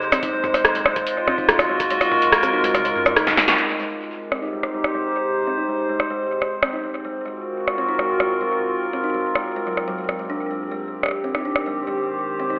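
IDM at 143 BPM, wistful and playful, cut from a longer piece: a hollow, flute-like pad holds sustained chords up front with chorus and a grainy 12-bit sampler grit, while a woody kalimba plays ringing arpeggios through a low-pass filter and dub echo, its filter sweeping from 3.6 seconds onward. An up-front analog drum machine with a punchy snare, metallic hats, rim clicks, shaker and toms runs through tape echo, joined early by a deep electronic kick in the background that drops out at 1.9 seconds. A round sine sub bass with tube saturation sounds from the very start and stops at 3.6 seconds after a drum fill and band accent. The mix is echo-heavy and drenched in spring reverb, with a narrow telephone-like tone, moving between Gbmaj9#11 and Abmaj7.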